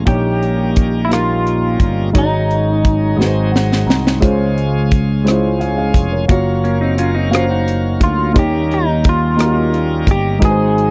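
Reverent and hopeful, this slow gospel passage in 6/8 is cut from a longer piece, with an intimate grand piano, a growly, punchy picked bass and an airy fusion kit with a high-tuned snare laying the foundation, while a shouting tonewheel organ holds sustained chords through overdrive and a slow rotary speaker. A twangy, compressed electric guitar carries the melody through analog chorus, and a dark, fingered second guitar drenched in lush chorus adds a line from 6.6 to 8.3 seconds. Drums and piano share a fill at 3.2 seconds over chords moving from Eb7/Bb through Ab7sus4, Dbmaj7 and Gbmaj7, all captured in a dry, close 1970s-style studio room.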